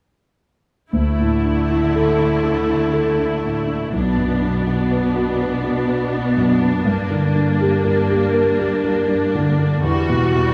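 Moving and uplifting, this cinematic excerpt, cut from a longer piece, unfolds in a rubato 3/4 as a dark, mellow concert grand piano with deep bass sits up front beside a rich, intense viola section whose bowed vibrato has a smooth top, while a soft-attacked cello section adds expressive, lush bass, all from 0.9 to 10.5 seconds through chords moving from Dsus2 to Bm, Gm and Emadd9 in the reverberant space of a recital hall.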